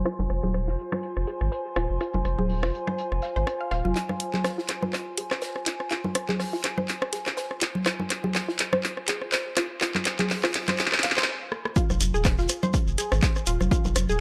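A swung 4/4 pulse at 123 BPM drives this quirky, clinical minimal techno cut in F minor, taken from a longer piece. A squelchy, detuned pluck riff with chorus and dub echo rides over a lo-fi, warbling pad with phaser, a thick, mellow sub bass with sidechain pumping, overdriven electronic rim clicks and congas, and a distant, roomy soul drum kit of hi-hat and snare in the background. After a filter-swept opening, an up-front garage kit of handclaps, hats and rim click enters at 4.0 seconds for a build-up with drum fills, then a brief stop at 11.3 seconds gives way at 11.8 seconds to a drop where a dry, punchy overdriven kick and a grainy, close shekere join the returning bass, all within light small-room ambience.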